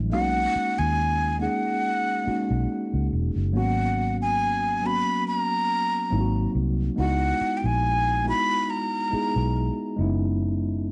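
R&B with a neo-soul lean, this introspective, late-night excerpt moves at a slow 70 BPM in 4/4 with a light sixteenth-note swing, settled in G# minor. A mellow tine electric piano carries the accompaniment up front with a clean, direct tone, while a vintage muted fingered electric bass sits low beneath it, dark, round and foam-muted. A breathy jazz flute takes the melody from 0.1 s to 10.0 s, its straight tone, soft attack and lifted highs given an expressive edge and a touch of slapback echo. The harmony drifts from B6 through G#m11, G#7 and a rootless C#m9 before landing on F#7sus4. A moderate studio reverb opens up the space, and a worn, warbling cassette-tape quality with warbly pitch drift gives the whole recording an aged, hazy character.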